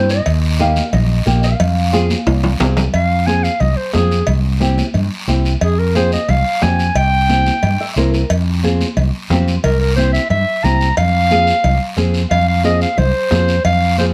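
A danceable, fiery cumbia in F harmonic minor, moving at a brisk 179 BPM in a straight 4/4, taken from a longer piece. It opens with a short, dark, clean electric guitar solo, fingered and compressed with an analog chorus sheen, which stops at 2.6 s. Underneath, a thumb-plucked flamenco guitar plays the accompaniment while an up-front fretless bass lays down a round, amped low end. The percussion layers a raspy guiro, ringing metal-shell cowbell and timbales that sound close and dry, and bright, high-tuned congas sitting in the background. At 2.9 s a present, classical-style clarinet takes over the melody with a warm, up-front solo over chords moving between F minor and C, and a brief nylon-string guitar fill arrives at 7.6 s. The whole mix is captured with close, detailed microphones and a light touch of reverb.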